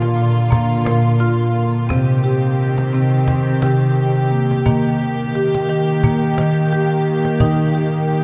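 Calm and gentle, this meditative world passage, cut from a longer piece, sets up-front woody marimba arpeggios on rosewood bars over dark, intimate sul tasto string chords with light vibrato and soft attack, while a hard-handed cajon with faint snares sits further back in a dreamy mix soaked in cathedral reverb, moving through Bb, Cm and Eb.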